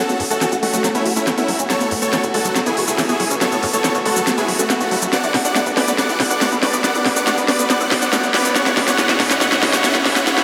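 A huge, detuned supersaw lead carries the melody up front from the first moment, over bright, earthy chamber strings holding sustained chords and a squelchy, resonant acid bass running arpeggios with chorus, delay and a filter sweep in the background, all in F# minor at 140 BPM. This bittersweet, euphoric stretch of uplifting trance, cut from a longer piece, is one long build-up with a drum fill throughout. A techno kit with a cracking snare and smooth hats sits up front, a tight, punchy sequencer bass drives very quietly underneath, a faint riser enters at 4.8 seconds, and the chords move from F#m to Bm to C#m, all soaked in a dreamy, vast reverb.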